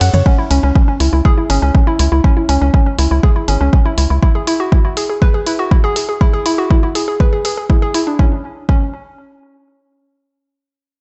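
Melodic techno with a hypnotic, melancholic mood, cut from a longer piece and moving in a straight 4/4 feel over a shift from C#m to E. A woody, wave-folded pluck carries the arpeggios up front until 8.8 seconds, its organic, evolving tone colored by a noise layer, a filter sweep, chorus and analog delay, all pumping against the sidechain. A tight, driving sequencer bass built from sawtooth and square waves sits punchy and up front beneath it, but only until 4.2 seconds. A deep, overdriven electronic kick, layered and re-recorded in a large room, enters at 0.3 seconds, while a dry analog drum machine supplies hi-hat, ride cymbal, shaker and toms, gritty with overdrive and pumping with sidechain until 8.0 seconds. The mix has a light reverb and digital ambience, with a dark top end that never reaches above 8.0 kHz.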